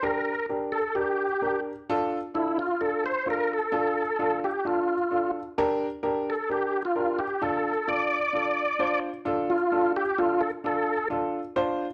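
A straight 4/4 pulse at 130 BPM drives this passionate, urgent soul excerpt in D minor, moving between Gm and Dm as a clear, clicking tonewheel organ carries the melody through chorus vibrato and a fast rotary speaker. Beneath it, an intimate, woody upright piano, slightly detuned and with audible action noise, supplies accompaniment up front until 11.8 s. From 9.3 s the organ takes a solo, and the whole is set in a moderate large studio reverb blended with a small room.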